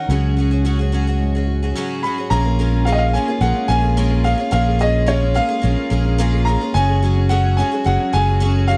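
The sound is dry and close, with little reverb, in the manner of a 1970s studio, and this short cut from a longer folk piece feels anthemic and uplifting at a straight 108 BPM in 4/4. An upright piano carries the melody high in its range with an open tone and long sustain, while a round, amped electric bass sits dark and up front, the loudest part in the mix. A bright twelve-string acoustic guitar, picked on fresh strings, shimmers with octave-doubled sparkle and the odd finger squeak throughout. A warm fingerpicked steel-string guitar accompanies only at the start, and after a brief break at 1.7 seconds it drops out as a second, boxier upright piano takes up arpeggios at 2.3 seconds, both piano parts sharing a clear, woody character. The harmony moves from C#sus4 to A#m7 and settles on F#sus2.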